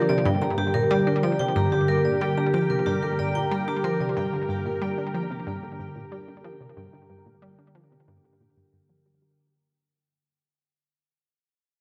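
A round, detuned analog pluck drives this mysterious, cosmic piece of sequencer-led ambient space music, playing a riff with chorus and delay at 92 BPM in G minor over a single Gm chord. A swirling, phased sawtooth pad holds sustained chords beside it, a metallic, ringing vibraphone adds delayed arpeggios from 0.1 to 4.1 seconds, and a soft, pulsing triangle texture sits in the background. Everything is bathed in a concert-hall reverb, and this short cut from a longer piece fades out across its full 9.4 seconds.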